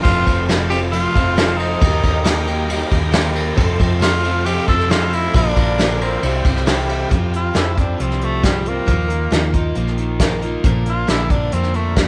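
A straight 4/4 groove from a soft brush drum kit, with dark cymbals and a tight kick, drives this open-road, jangly slice of folk rock and heartland rock, anchored by the round, dark tone of a hollow-body electric bass and a full-bodied, picked dreadnought acoustic guitar. A raspy tenor saxophone carries the melody with gritty vibrato and tape echo, while a double-tracked, overdriven electric guitar riff sits in the background and a very quiet, key-clicking tonewheel organ on a rotary speaker holds sustained chords until 7.1 seconds. From there the saxophone takes an edgy solo through to 12.1 seconds over suspended chords that settle onto Bb, all set in a small, lightly reverberant room.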